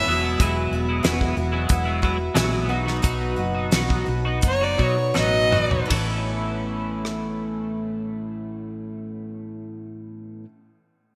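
A clear, biting fiddle takes a nasal solo in two short phrases, one at the start of this hopeful folk and heartland rock excerpt in A lydian and another from 4.5 s, moving through Eadd9 and B to Aadd9 in a straight 4/4 that slows within 79-93 BPM, while a shimmering, octave-doubled twelve-string acoustic with subtle chorus, a twangy, compressed twelve-string electric riff with analog chorus, and a round hollow-body bass fill a lush hall, and a damped 70s kit with a fat snare and gated reverb enters at 0.4 s, plays a fill from 5.1 s and stops at 7.2 s.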